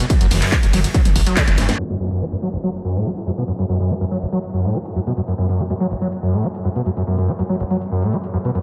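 Dark and intense, this driving peak-time techno excerpt at 142 BPM in F# minor opens on a drop where a heavy, tape-warm electronic kick, a very quiet soft brush kit with dark cymbals and a fat snare, and a deep, thick saturated sub bass with sidechain pumping all stop by 1.7 seconds, leaving a screaming, squelchy sawtooth acid riff up front, resonant, chorused, distorted and tape-echoed, over a filtered techno kit with a cracking snare, handclaps, toms and crashes, all soaked in dreamy cathedral reverb through a filter sweep from 1.8 seconds.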